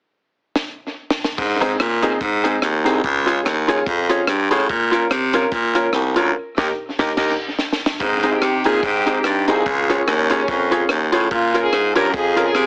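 Joyful and upbeat, this swung ska excerpt opens with a compact cocktail drum kit fill at 0.6 seconds, its punchy kick, high-tuned snare, rim clicks and dark cymbals touched with tape echo, before a raspy, gritty baritone saxophone takes the bass line up front at 1.4 seconds alongside a grainy, very quiet cabasa. A clean semi-hollow electric guitar and a woody, vintage upright piano sit in the background with their accompaniment and stabs over a chord cycle of Ab, Db, Bbm and Eb, building to a band accent and a second drum fill. At 8.0 seconds a distant, roomy horn section brings in the melody, all heard through a heavily compressed, AM-radio sound with light reverb.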